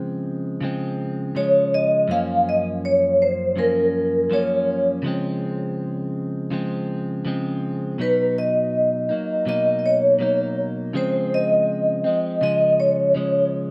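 A rough home-demo sound with moderate studio reverb frames this hazy, nostalgic indie pop fragment, cut from a longer piece, set in a gently swung 4/4. A clean electric guitar opens alone at 0.0 seconds, its picked, compressed tone sitting up front with subtle chorus and a warbly pitch drift that lends the accompaniment a faintly wobbling, worn quality. At 1.4 seconds a vibraphone played with medium hard mallets enters to carry the melody in a bright upper register, its metallic, ringing notes colored by a fast motor vibrato and an ensemble chorus. Both parts sit close to the listener, with the vibraphone standing a little louder than the guitar. Underneath, the harmony drifts through lush major-seventh chords, moving from Dbmaj7 to Gbmaj7, back to Dbmaj7, then to Cbmaj7 before settling again on Dbmaj7.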